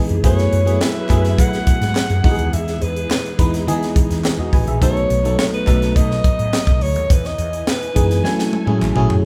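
A breathy alto saxophone carries the melody through tape echo, its light vibrato floating over a glassy, bell-like FM electric piano with chorus and a woody fretless bass that sounds growly and round, in a bittersweet, nocturnal slice of polished 1980s jazz-funk pop at 105 BPM. A tight funk drum kit with a high-tuned snare sits up front, very quiet group handclaps join at 0.8 seconds, and a dark symphonic string section holds lush sustained chords in the background as the harmony moves from F#m11 through Emaj7 and B7. A drum fill closes the passage from 8.2 seconds, and the band sounds as if playing live together in a large studio with moderate reverb.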